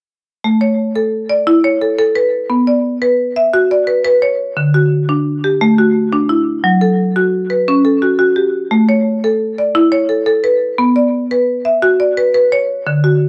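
Hypnotic and rippling, this short cut from a longer southern African traditional piece moves at 116 BPM in a straight 12/8, centred on A mixolydian. A single marimba played with hard mallets spins arpeggios from 0.4 to 13.3 seconds, its padauk bars giving a woody, bright, percussive tone that sits up front with an airy openness. Light reverb colours the outdoor sound as the harmony cycles through A, Bm, D and F#m before returning to A and Bm.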